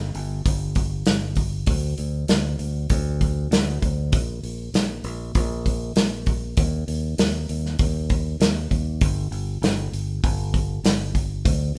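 A bright, growly fingered electric bass opens at 0.0 s in G minor, joined almost at once by a loose, up-front indie drum kit with tight kick, medium-tuned snare and hi-hat, in a brooding, cathartic cut from a longer quiet-loud alternative rock piece at 98 BPM in straight 4/4, played live in one room with moderate stone-room reverb.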